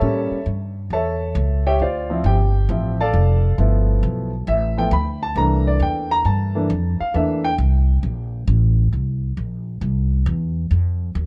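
A dry, dark-toned recording opens this energetic, joyful big band swing excerpt in C mixolydian, moving at 135 BPM in 4/4 with a firm swung eighth-note feel. A smooth, vintage-toned concert grand piano with deep bass sits up front and carries the accompaniment through changes like A7b9, Dm7, G13 and C13 until 7.5 seconds. A woody pizzicato upright bass on steel strings, also up front, plays from the start until 11.3 seconds, carrying the harmony into C7 and F7 chords.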